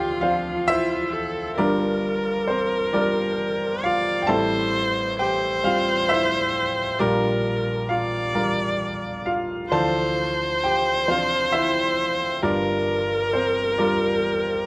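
Close, detailed microphones and a light reverb give this 14.7-second cut from a longer acoustic folk-pop ballad an intimate, up-front sound, with the heartbroken, melancholic mood unfolding at a slow 44 BPM in a straight 6/8, in G dorian. A warm grand piano carries the melody with a natural tone, its action noise audible and a slapback echo trailing its notes. Meanwhile, a single bowed viola sings a rich, smooth, even second line with vibrato over chords moving from Dm9 through Gm7 and Am7 to Gm7/Bb.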